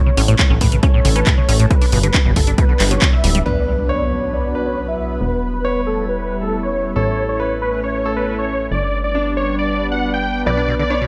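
A huge, detuned supersaw melody opens this emotional, bittersweet uplifting trance passage in B minor at 137 BPM, pumping against the sidechain with a low-pass filter and dub echo, as a lush, slow-attack unison pad with chorus settles in beneath it. Within the first moments a squelchy, resonant acid bass spins arpeggios through phaser and echo, a plucky, funky analog bass anchors the low end, and a tape-warm analog drum machine with crash, handclaps and hi-hats joins an up-front, punchy electronic kick. By 3.5 s the drums have stopped and the acid arpeggios have dropped out, while an electronic impact hits and a filter sweep begins on the supersaw. At the same point a clear, vintage-toned concert grand piano enters with a delayed second line over the cycling A, G, Bm and Em chords. The acid bass returns at 10.5 s as the harmony lands back on B minor, all set in a light reverb.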